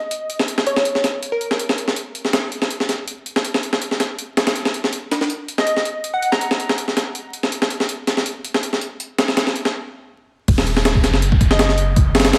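Nostalgic and dark, this drum and bass excerpt in a jungle vein drives a gritty, compressed breakbeat kit with a thumpy kick and high-tuned snare up front, scattered glassy, detuned pluck phrases drenched in chorus, cassette tape and dub echo, and a break at 9.7 seconds before the drop at 10.5 seconds brings in a deep, mellow sine 808-style bass on Eb minor beneath a background downlifter, all set in echo-heavy digital ambience with vinyl crackle.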